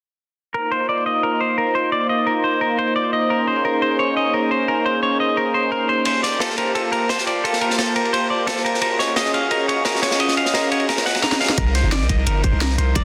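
Dreamy, rolling liquid drum and bass cut from a longer piece, where a thick, detuned sawtooth pad with chorus holds lush minor eleventh chords under a twangy, picked clean electric guitar playing filtered, delayed arpeggios, before a gritty, saturated breakbeat kit with dark cymbals slips in at 6.1 seconds, a cracking drum and bass kit fills at 11.2 seconds, and a tight electronic kick arrives with a deep, sine-like 808-style bass at 11.6 seconds, all inside a wet hall reverb and a dense, heavily limited master.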